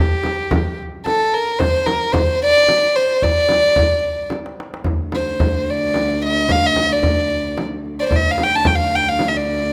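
Arabic maqam ensemble music in D maqam bayati at 110 BPM in a straight 3/4, longing and melancholic, led by an intimate, up-front solo violin with a dark, airy sul tasto tone, light vibrato and soft attack, over a deep frame drum and a clay-shelled darbuka played with hard hands; a drum fill at 4.3 seconds leads into the second section at 4.9 seconds, where a rich, expressive cello drone on low D with vibrato and portamento joins the ensemble, the whole set in a moderate recital hall reverb and captured with close, detailed microphones.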